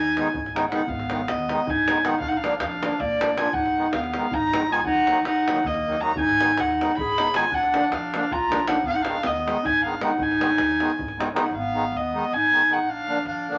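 A dark, nasal violin with a gut-string tone carries the melody up front from the very start of this virtuosic, bittersweet Balkan wedding-band piece in 7/8, joined at once by a warm, roomy clarinet on a second line beneath it. A full, close-miked accordion with reedy, slow-beating tone fills in the accompaniment, a woody pizzicato upright bass sits low in the mix, and a tight, vintage-sounding davul drives the percussion until it drops out at 11.5 seconds. A wet small-room reverb surrounds the ensemble in this fragment of a longer performance.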